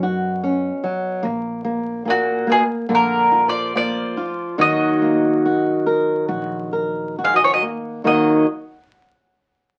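Passionate and mournful, this fado-style ballad in Eb minor unfolds at a rubato 66-74 BPM in 4/4, cut from a longer piece, with harmony moving from Bsus2 through Bb to Ebm. A bright bowl-back mandolin sits up front with the melody on its doubled strings, while a fingerpicked twelve-string acoustic guitar adds a shimmering, octave-doubled second line with a swing feel and audible finger squeak. A boxy flamenco guitar plays up-front accompaniment, a woody, growly pizzicato upright bass anchors the low end, and moderate studio reverb with the crackle of a very old 78 rpm record gives the recording an aged patina.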